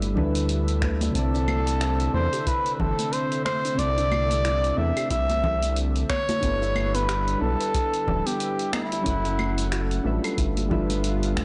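A blown-out, overdriven recording with light reverb and a dulled top end carries this wistful, relaxed sunset chillout excerpt at 91 BPM, swung on the sixteenths and moving through G6, C69 and F#m7 to G13. Soft, dark electric-piano-like synth keys with chorus and tape echo sit over a lush, warbling detuned pad in the background. A round, up-front analog bass with tube saturation anchors a tape-toned deep house kit of claves, finger snaps, hi-hat and shaker, ringing congas and a deep, overdriven electronic kick that enters at 0.2 seconds. From 1.2 seconds a veiled, forceful jazz-style trumpet with bucket mute, vibrato and tape echo takes an up-front solo until 10.0 seconds, while a very quiet vintage pluck plays arpeggios beneath it.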